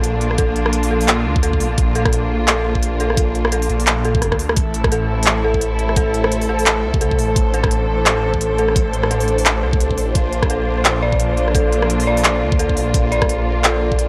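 A swirling, thick detuned saw bass sits up front through a phaser in this half-time drum and bass excerpt at 172 BPM, with a swung feel on the 16ths and a spacious, heavy mood over a Bb, Am and Bb progression. A crisp, layered electronic kit with handclaps, hi-hat and rim click plays from the start and is joined by a knocking kick from 0.4 seconds. A drum fill arrives at 4.2 seconds, and an eerie, inharmonic FM synth bell plays arpeggios with chorus, tremolo and analog delay above veiled, muted strings holding sustained chords with 12-bit sampler grit and sidechain pumping. From 4.8 seconds a flickering, grainy granular texture hovers in the background with its own reverb, all captured in a dry, gritty recording with cassette tape and transformer saturation.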